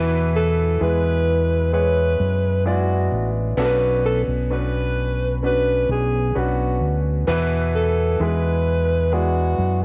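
A breathy, whispered, intimate alto saxophone with soft-attack subtone and vibrato carries the jazz-inflected solo melody from 0.4 seconds in this melancholic, emotional pop ballad at 65 BPM, set over a polished grand piano and a dark, round, punchy fingered electric bass moving from E to Bmadd9 and back, with the saxophone and piano given a cassette tape color inside a lightly reverberant home recording.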